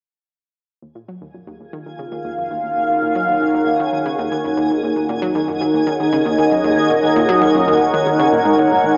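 A bright, evolving pad of detuned sawtooth and sine tones with a sub octave and resonant filter sweep sits up front, holding sustained chords from an Ebm7 in this expansive, mysterious stretch of sequencer-driven ambient space music in a steady 4/4. Beneath it, a round analog pluck riff fades in from 0.8 s in the low register, roughened by vintage 12-bit sampler grit and a tape echo. A sparkling granular texture with an octave-up shimmer fades in from 2.0 s, all set within a dreamy plate-reverb mix with a small-speaker sound.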